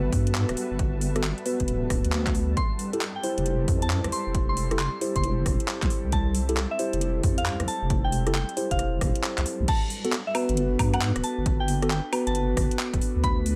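Sunny and bouncy, this excerpt from a longer two-step UK garage track swings along at 135 BPM in G major, built on a deep, wobbling bass, a punchy analog kick and a tape-warm garage kit of metallic hats, handclaps, rim clicks, woodblock and crash. Mellow tine electric piano stabs pass through a filter sweep and dub echo, while an airy, breathy pad and a cloudy, evolving granular pad pump softly in the background, moving from Gmaj9 to Fmaj9 at 2.6 seconds, when a pure, warbling FM bell melody enters. The kick drops out at 9.2 seconds before the drop lands at 9.7 seconds, as the granular pad stops and the harmony returns to Gmaj9.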